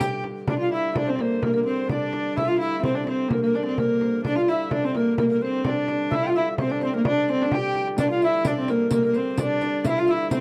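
Driving and ancient, this medieval dance in 2/4, cut from a longer piece, is led by an up-front, nasal viola da gamba with a gut-string tone and vibrato, while a bright, chiffy tenor recorder and a hard-mallet marimba with woody rosewood bars carry a second line. A dark hurdy-gurdy drone sits in the background beneath a small frame drum played with soft hands, and a jingling riq sounds briefly at the start and returns at 8.0 s. The close, dry 1970s-style studio sound carries light reverb.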